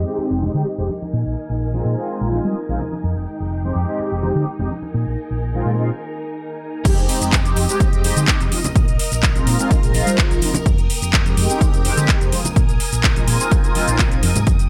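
A dry, close-sounding mix carries this nostalgic, groovy filtered disco house cut at 126 BPM in straight 4/4, cycling between Fm9 and Bb7sus4 as a filter sweep shapes the opening 6.8 seconds. Dark, detuned sawtooth synth brass with chorus, phaser and vibrato sits over a lush vintage string machine thickened by ensemble chorus and a sub octave, joined by a round, amped fingered electric bass with tube saturation and ringing tambourine and congas in the background, each pumping against the sidechain. After a short break at 5.9 seconds, the drop at 6.8 seconds brings in an up-front, overdriven electronic kick and a tape-toned house kit of crash, handclaps, metallic hi-hats and shaker.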